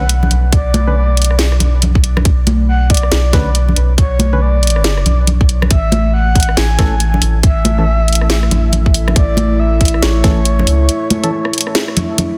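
A breathy, flute-like synth lead with vibrato floats over hollow, percussive organ stabs, both bathed in chorus and dub echo, while a round, soft sub bass sits beneath in this cavernous, dark deep dubstep piece at 139 BPM, moving in half-time with a swung 16th feel in B dorian from Bm to A. A garage kit with a cracking snare, hi-hat and rim click, hard-handed bright congas trailing dub echo, and a tight, up-front electronic kick carry the rhythm, and a moody, detuned pad with a slow attack and built-in reverb joins at 7.3 seconds. The sub bass stops at 10.9 seconds for a short break as this fragment of a longer piece ends.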